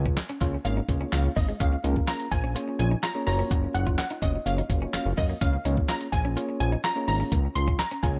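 This upbeat, summery dance-pop passage, cut from a longer piece, opens with a lush, punchy unison pluck carrying the melody over a fat, thick sawtooth bass that sits up front and pumps with sidechain, while a barely audible electronic downlifter passes beneath during the first 1.6 seconds. The detuned pluck blends a noise layer and wave-folded tone with a filter sweep and a moving notch, trailing analog delay. A compressed, muffled lo-fi sampler-style drum kit comes in with a thumpy kick, a medium-tuned snare, handclaps and hi-hat. Alongside it, a bright, picked, clean electric guitar plays a quiet riff through subtle chorus and delay. A jingly acoustic tambourine soon joins them, sitting close but in the background. From 0.4 seconds a bell-like tine electric piano adds direct-sounding accompaniment that also pumps and echoes. The harmony moves from Bbm7/Db to Db6 and Gbmaj7 before returning to Db6, all set in light reverb within an echo-heavy mix.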